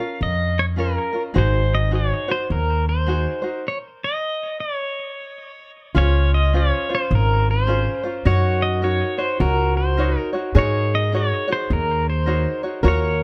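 Swung eighths carry this dreamy, sunny Hawaiian piece, where an up-front, clean electric pedal steel guitar played with fingerpicks and slide, with volume swells and delay, sings the melody over a light, fingerpicked tenor ukulele and a woody, thumpy pizzicato upright bass; the band breaks into a stop from 3.7 to 6.0 seconds, and a full-bodied, fingerpicked jumbo acoustic guitar adds a second line from 5.9 seconds, all in a light reverb.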